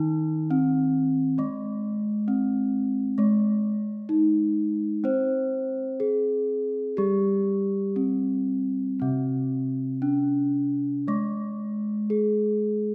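In a straight 4/4 pulse, this hypnotic, stately gamelan excerpt pairs two bronze metallophones that sound together from start to finish. The melody metallophone, struck with padded disc mallets, is mellow, soft and close-miked, dry and full up front, while the lower accompanying metallophone, played with a wooden mallet, rings with a metallic bronze tone, also up front, beneath it. A moderate scoring-stage reverb gives a sense of space, and the music moves into a new section at 9.0 seconds.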